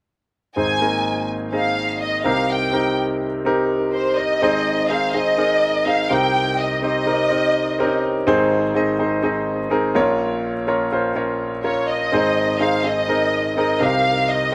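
Uplifting and hopeful, this pop excerpt in Ab major at 125 BPM sets a lush, vibrato-rich violin section singing the melody from 0.6 to 8.0 seconds and again from 11.6 seconds, over a brilliant concert grand piano with audible action noise, deep bass, long sustain and a slapback echo, which carries the accompaniment throughout as chords move between Ab, Cm7 and Bbm under light reverb.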